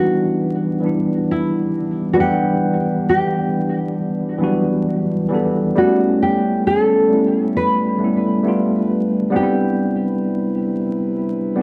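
A worn, slightly out-of-tune tine electric piano sits up front in this reflective, hazy hip hop excerpt, lightly overdriven and softened by cassette tape and a low-pass filter, as though heard through built-in speakers. Beside it, a full-bodied, fingerpicked nylon-string guitar carries the melody with a deep classical tone and an analog delay trail, while a mellow French horn section holds tight, closely miked chords with light vibrato in the background. Swung sixteenths, a moderate spring reverb in a small room and a bed of vinyl crackle frame a progression moving from Em7 through A7 and G7 to Cmaj9.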